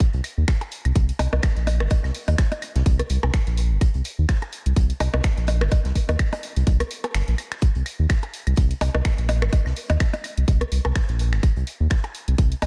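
Hypnotic and cool, this minimal techno excerpt runs at 126 BPM in C minor with a 16th-note swing, built on a tight, up-front electronic kick, a garage kit of finger snaps and warm hats, a very quiet gritty acoustic kit of hi-hat and snare, a round, deep, dark analog bass pumping under sidechain, and overdriven electronic claves, blips and rim clicks fed through analog delay, all in a digital ambience with a brief break at 7.1 seconds.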